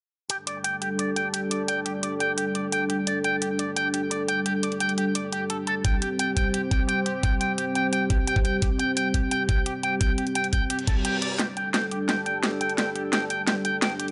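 A moderate plate reverb surrounds this dark, technical drum and bass passage, its top end held in check, with the kick, drums, pad and guitar set up front for a mechanical, aggressive feel. A sawtooth pad, detuned and chorused over a sine sub octave, sustains full-bodied chords with a slow attack and an evolving filter swell, pumping against the sidechain. A clean, picked electric guitar runs twangy arpeggios through an envelope filter, low-pass filtering and delay, and it also pumps with the sidechain. The layered, overdriven drum kit drives the groove with a cracking snare and bright hats, while a knocking electronic kick, re-recorded in a small room, enters at 5.8 seconds. A reverse cymbal rises at 10.8 seconds, the kick drops out, and from 11.4 seconds a build-up brings a drum fill and a filter sweep on the guitar.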